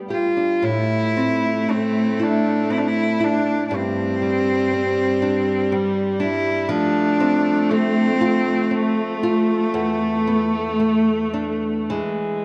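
Soaked in a long cathedral reverb with a dark overall sound, this brief excerpt of a Celtic slow air in A minor moves at a rubato 59 BPM in 3/4, full of longing and a haunting air. A bright, biting solo cello carries the melody up front with light vibrato, while a single bowed viola with a rich, focused tone and vibrato sits farther back on a low second line. A small, woody, boxy nylon-string guitar with old strings is fingerpicked beneath them through Am, Gsus4 and F before coming to rest on E7 at 11.9 seconds.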